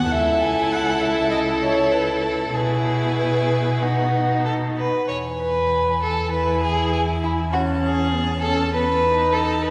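A quick, classical-period string quartet movement, lively and graceful, moves with an elastic rubato over uneven beats, and a fresh passage begins at 5.1 seconds as the harmony settles onto E. A warm first violin carries the melody above a second violin's richly vibrato-laden line, while a viola fills the inner accompaniment and a cello anchors the bass, all four bowed smoothly and evenly by single players. The quartet is heard from further back in a concert hall whose wet reverb lingers for 2.3 seconds.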